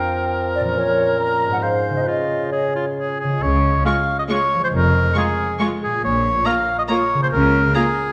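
In a straight 3/4 at 138 BPM, this playful, mischievous film cue in Db major opens with a clear, up-front oboe, a pure, crisp-edged flute and a punchy, vintage bassoon over ringing, fingerpicked harp arpeggios, with the flute and bassoon dropping out at 3.2 s. From 3.4 s lush bowed cello and double bass sections take the bass line, and at 3.9 s the violins enter with a smooth high melody and a distant inner line alongside focused violas, while the oboe and harp carry on. Wet scoring-stage reverb gives this whimsical, quirky cut from a longer piece a roomy sheen.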